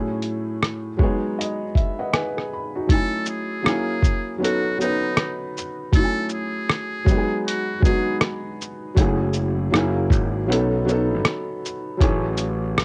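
Swung sixteenths carry this nostalgic, reflective lo-fi hip hop cut, where a muffled, thumpy sampler-style kit of kick, hi-hat, rim click and shaker plays alongside a soft, boxy felt-muted upright piano with audible action noise, a filter sweep and piano fill colour the opening seconds, a buzzy, brilliant metal-muted trumpet sings a vibrato-tinged jazz line from 2.9 to 8.2 seconds, and a growly overdriven electric bass arrives at 9.0 seconds, set in light reverb with the dulled top end of a home cassette recording.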